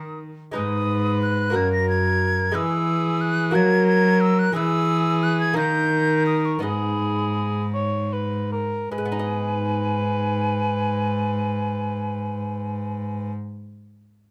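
Rustic and solemn, this excerpt of a renaissance-style consort dance in a steady 6/8 has an airy, hollow concert flute carrying the melody with vibrato and a crisp attack, while a warm cor anglais adds a second line beneath it. A bright, delicate lute fingerpicks the accompaniment on gut double strings, and a single bowed cello sits up front with a rich, reedy gut-string tone on the bass. The close, detailed sound carries light reverb, and the dance slows between 3.6 and 8.9 seconds before a new section begins.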